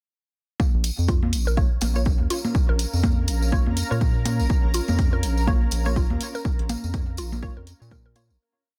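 Hypnotic and quirky, this short minimal techno piece in Bb minor runs at 123 BPM with a swung sixteenth feel, built on a punchy four-on-the-floor electronic kick, a round, deep analog bass riff with sidechain pumping, programmed closed hats, close hand-played tambourine sixteenths, and tape-echoed conga clicks and blips in cross rhythm. A woody FM mallet pluck in the background loops a 10-step sequence that drifts against the bar through chorus, cassette tape and tape echo, while crisp, dark wavetable chord stabs with 12-bit grit and a filter sweep move one shape in parallel from 1.6 seconds. A cloudy granular pad with slowly shifting chords and a very quiet, swarming high drone thicken the dense, dry mix before the fade-out from 5.8 seconds.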